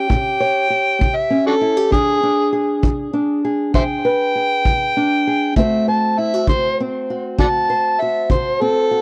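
Set in 12/8 at 66 BPM, this laid-back, gritty acoustic country blues excerpt sets an amplified, overdriven harmonica with tape echo, light vibrato, tongue slaps and scooped notes taking a jazz-style solo up front over a dark, woody, boxy fingerpicked old ladder-braced acoustic guitar on old strings and a punchy, roomy kick drum played with brushes, moving from A7 to E7 at 1.9 seconds and D7 at 5.6 seconds in light reverb.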